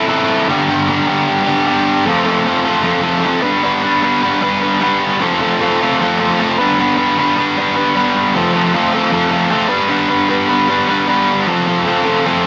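A wet studio reverb surrounds this short rock fragment, which is cut from a longer piece and runs about 12.5 seconds. A lone overdriven electric guitar, picked and double-tracked, sits up front and plays throughout, ranging from G2 to B4. Its tone is warm, and the mood is wistful and jangly. The tempo is a brisk 153 BPM in a straight 4/4 feel. The harmony sways back and forth between G and F, with a brief opening passage giving way at 2.1 seconds to a longer stretch that keeps alternating the two chords to the end.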